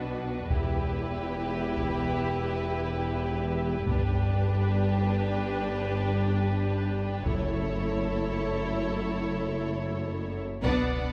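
Cinematic, epic orchestral film score in a rolling 6/8, this short cut from a longer piece feels dark and dramatic, building steadily over its moody minor-leaning harmony. Two violin sections carry the upper lines, one lush and smooth with even vibrato on the melody, the other clear and intense on a second line, both set at a distance. Violas add a clear, intense accompaniment, while a French horn section holds dark sustained chords with a soft attack and light vibrato. Cellos sit in the background with a rich, lush tone above focused, smooth-topped double basses, anchoring the low end. A taiko ensemble enters at 0.5 seconds with heavy sticks and an acoustic live-room sound, and at 10.8 seconds a huge, dark impact lands in the background as the whole band accents the close. The scoring-stage reverb is wet and heard from further back in the room, giving the sections a spacious, cinematic depth.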